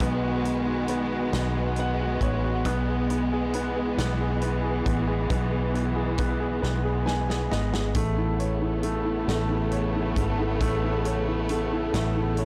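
A six-eight pop ballad in A lydian, heartfelt and romantic, moving at a slow 45 BPM in dotted quarters across this 12.4-second excerpt, with chords shifting from B6 to E to Aadd9. A warm, open baby grand piano accompanies over bowed studio strings holding sustained chords with vibrato and portamento, a dark, round, foam-muted fingered electric bass sitting up front, and an acoustic country drum kit with a punchy kick and medium-tuned snare carrying soft clipping. The piano adds fills at 1.3 and 6.6 seconds, the drums joining with a fill at 6.6, all in a blown-out, overdriven recording with light studio reverb.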